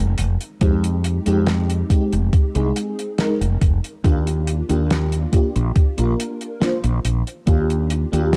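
Vaporwave at a slow 70 BPM in F dorian, this short woozy, hazy fragment is cut from a longer piece and moves from Fm9 to Ebmaj7. A mellow fretless electric bass opens alone at 0.0 seconds, its round, punchy tone sitting up front with tube saturation. The damped 70s drum kit follows with dry hi-hat and a fat snare in small room ambience, while a thumpy, sampler-style electronic kick arrives at 0.6 seconds and stays prominent, dropping out at 7.7 seconds. An FM electric piano layered with a soft pad also arrives at 0.6 seconds, lush and dreamy with detuned, decaying tones coloured by tremolo, ensemble chorus, analog delay and 12-bit sampler grit. The whole recording has a dry, gritty hardware character with cassette tape colour and little reverb.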